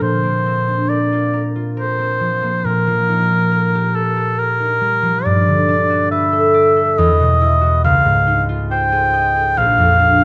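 Classical impressionist music for oboe and harp, dreamy and luminous at a rubato 69 BPM in 3/4, in which a warm solo oboe with light vibrato sings the melody up front over mellow, ringing, fingerpicked concert harp chords that drift from Bbadd9 through Gmaj9 and C#maj9 before settling back on Bbadd9, all captured by close, detailed microphones in a moderate scoring-stage reverb across this 10.2-second excerpt.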